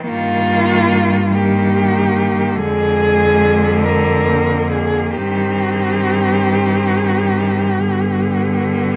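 Bathed in light reverb, this elegiac, yearning classical excerpt for cello ensemble unfolds in a rubato 12/8, with a warm solo cello singing the melody up front over a rich bowed bass line, while two further cellos shape a second line and an accompaniment, all four players using vibrato, portamento and expressive phrasing as the harmony passes from Eb/G through Ddim/F and Cm/G to G.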